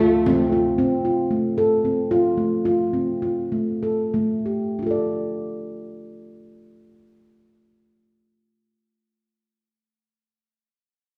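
In an uneven 7/8, this hypnotic yet urgent fragment of contemporary chamber music opens with a ringing, meditative handpan playing up-front fingertip arpeggios. It is joined briefly by a flicker of expressive bowed viola with vibrato and portamento, a woody, thumpy pizzicato upright bass in the background and a deep, hard-handed frame drum strike. From 0.8 seconds the handpan carries on alone until 9.1 seconds, slowing down between 0.8 and 4.8 seconds, all set back in a wet recital hall.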